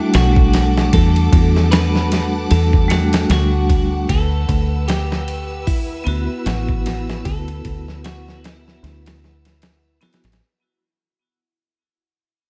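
Cinematic and hypnotic, this trip hop fragment, cut from a longer piece, moves at a slow 76 BPM in 4/4 with a swung sixteenth-note feel, and it begins fading out at 2.0 seconds until it closes at 10.4 seconds. A dusty, sampler-style soul drum kit sits up front with a thumpy kick, medium-tuned snare, hi-hat and ride, its compressed, gritty sound carrying the character of a small room, while a deep dub fingered electric bass, dark and round with a foam-muted tone, anchors the low end beside it. A vibraphone struck with hard mallets supplies metallic, ringing accompaniment with a fast motor vibrato and tremolo, roughened by vintage 12-bit sampler grit. Over this, a clean electric guitar picks a bright, twangy melody in a narrow upper-middle range, coloured by analog chorus and tape echo. A distant chamber violin section holds clear, focused bowed chords high above, also carrying that 12-bit grit. 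The harmony shifts from Em11 to D69 at 4.1 seconds, and the dry mix is wrapped in a layer of vinyl crackle.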